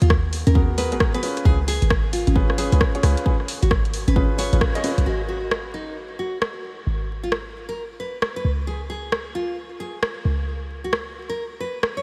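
A light reverb and vinyl crackle frame this soulful, late-night two-step UK garage excerpt at 133 BPM with swung 16ths, where a full-bodied, fingerpicked nylon-string guitar melody with delay runs throughout over a punchy, tight 808-style bass and a house kit of congas, bright hats and rim clicks, while a punchy electronic kick drives the opening until 4.7 seconds and a dark, mellow baby grand piano adds filtered, delayed stabs over G#m9 and C#7 before a band accent at 4.6 seconds leads into a chordless second section from 5.1 seconds.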